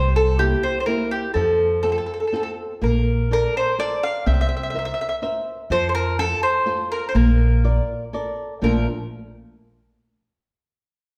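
Romantic and lively, this short excerpt cut from a longer piece is an Italian folk serenade in 3/4 at 124 BPM, set in Bb major. A mellow, woody mandolin carries the melody up front, its picked double strings ringing between G4 and F5. Beneath it, a boxy flamenco guitar is fingerpicked as accompaniment, sitting lower in the mix than the other two parts. An upright bass with dark gut strings plays pizzicato, thumpy and up front, anchoring the low end. The harmony cycles through C7, F and Bbmaj7 twice. The trio sounds like a band playing live in one room, bathed in a wet large-studio reverb, and all three parts stop at 8.9 seconds, just after a new section begins at 8.6 seconds.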